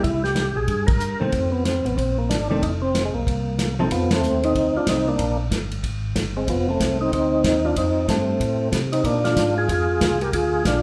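A percussive tonewheel organ carries the melody up front, its full, lightly overdriven tone colored by chorus vibrato, second-harmonic percussion and a slow rotary speaker. This is a swinging, bluesy soul jazz organ trio excerpt at 187 BPM in 4/4, with a 62% swing on the eighth notes. Beneath it, a second tonewheel organ plays the bass line, also overdriven with chorus vibrato and slow rotary, and audible key click. A dark, clean, fingered hollow-body electric guitar comps until 3.9 s, while an acoustic soul drum kit with a medium-tuned snare, tight kick, rolled-off top, hi-hat and ride sits up front yet sounds roomy. The band hits accents together at 0.8 and 4.1 seconds, moving through chords such as C7, D7b9b13 and F7 before landing on Bb7 at 9.0 seconds. Recorded live in one room, the group is bathed in a wet, large studio reverb.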